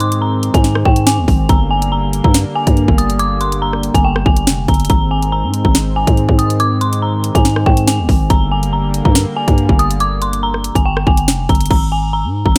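A dry, up-front mix carries this tense, dark drill excerpt at 141 BPM in a half-time feel in G phrygian, where an eerie, inharmonic synth bell with chorus, low-pass filter and delay plays the high melody over a smooth sawtooth pad's sustained chords, a growling, buzzy 808-style bass, and an electronic kit of hard-clipped kick, sharp snare, rim click, crash and bright hi-hats that drop out at 11.7 seconds as the pad stops.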